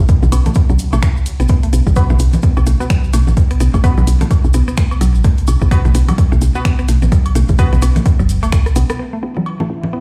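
A woody, round FM bass sits up front in this sparse, cool stretch of minimal techno at 128 BPM, its mellow notes pumping against the sidechain from the very start. An overdriven, dry electronic kick drives the drop alongside a punchy analog drum machine supplying finger snaps, hi-hat and rim click, while overdriven congas and cowbell with tape echo and a grainy, close cabasa fill in the swung percussion. A mallet-like FM pluck carries the riff with chorus and digital delay, and a muted, detuned sawtooth dub chord stab drifts in at 2.0 seconds through chorus and tape echo before dropping out at 7.7 seconds. After a drum fill, a filter sweep on the drums opens a new section at 9.0 seconds, where a tense, granular swarming drone enters in the background and a deep, moody pad lingers barely audible beneath it. The mix is dry and loud, heard as if through a big sound system in a bare stone room.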